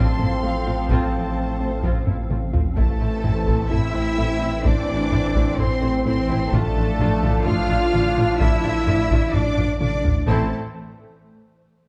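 A straight 4/4 pulse at 128 BPM drives this tense, futuristic hybrid orchestral and electronic film-score excerpt in A minor, where close, heavy-stick taiko drums sit in the background with fills at 2.1 and 9.6 seconds, a menacing, detuned, saturated saw bass and rich double basses anchor the low end with bowed cellos, dark, distant French horns and bright, tight trombones hold sustained chords alongside a hollow, flute-like, warbling pad, a very quiet soft, round, nasal pluck plays arpeggios until 9.9 seconds, very quiet violas accompany, and lush vibrato violins carry a smooth melody over an expressive second line, all within a moderate scoring-stage reverb and a dark, warm production as the chords move from F/A to Am and Dm/A.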